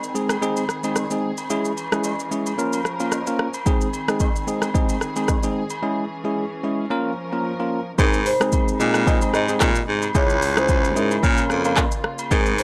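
Muted, veiled strings hold sustained chords under an electronic afro-pop drum kit with a deep kick and metallic hats, joined almost at once by a bell-like, clean electric piano and distant agogo bells and woodblock in this joyful, romantic afrobeats excerpt with a light swing. After a break at 5.8 seconds, a raspy, gritty baritone saxophone takes the bass line up front at 8.0 seconds, while a woody, mellow marimba with soft mallets carries the melody in the background through tape echo. The strings pump under sidechain compression, and the whole recording has a dry, gritty character with transformer saturation, light reverb and small room ambience.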